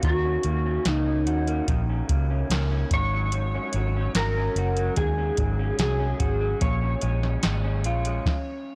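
A blown-out, overdriven recording with light reverb frames this short, lonely and mellow piece of indie bedroom pop, cut from a longer song and moving at an unhurried 73 BPM in 4/4 with a straight feel in Eb minor, tuned slightly flat to A4 = 435 Hz. A clean, dark lap steel guitar carries the melody from Eb4 to Db5, its slide and volume swells smoothed by compression and coloured with analog chorus and tape echo. Beneath it, an electric guitar through a small old amp plays slightly broken-up, lo-fi accompaniment, with subtle chorus and a warbly pitch drift. A round, foam-muted vintage bass sits up front with tube saturation, while a dry analog rhythm box supplies a deep kick, crisp snare and metallic hats. The harmony moves from Ebm7 to Ab7sus4 at 2.9 seconds and Bbm7 at 6.6 seconds before the music stops at 8.3 seconds.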